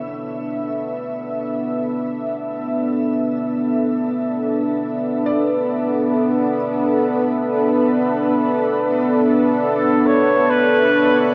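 Ambient music in free time and B minor, melancholic and serene, this short excerpt from a longer piece rests on a single Bm9 chord. A dark, detuned analog pad sits up front with sustained chords under chorus, while an evolving, vintage analog drone with pulse-width modulation and its own chorus holds beneath it. Far back in the mix, a felt-muted upright piano fades in across the whole passage, its soft, intimate arpeggios carrying audible action noise and short sustain through a delay. At 9.6 seconds a mellow flugelhorn enters up front with a distant, roomy melody marked by vibrato and delay. A lush shimmer reverb and the warble of worn cassette tape with drifting pitch give the sound a hazy, aged character.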